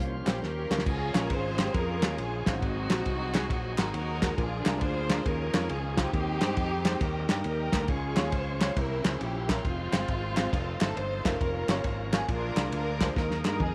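A swung 4/4 at 136 BPM drives this uptempo gospel excerpt, its hopeful, reverent mood carried by a lush, bowed string section that sings the melody up front with expressive vibrato. Beneath it, a punchy, direct fingered electric bass anchors the low end, while a bright tonewheel organ holds sustained chords in the background, lightly overdriven and shouting through a fast rotary speaker. A woody upright piano with short sustain adds background accompaniment from 0.3 seconds, joining a soul drum kit of dark cymbals, tight kick, medium-tuned snare and toms in a pumping, rolled-off booth sound. Crisp, compressed group handclaps sit behind the band, and short drum fills mark the opening at 0.4 seconds and the close at 13.2 seconds. The harmony moves through rich gospel changes such as Eb13, C7b9 and Bbm/F before settling on Ebsus4, all bathed in light reverb.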